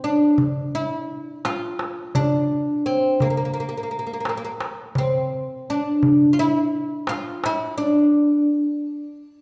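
A wet recital hall reverb, with a decay of about 1.4 seconds, surrounds this short excerpt from a longer Turkish makam ensemble piece in D makam ussak. The mood is melancholic and soulful, moving at a steady 85 BPM in a straight 4/4. A fretless, plectrum-plucked oud carries the melody up front for the full 9.4 seconds, its double strings giving a deep, woody tone within a range from Bb3 to F4. A darbuka joins at 0.4 seconds and plays until 7.6 seconds, sitting lower in the mix with the vintage, band-limited sound of a clay shell and natural skin struck by soft hands. The whole passage forms a single section.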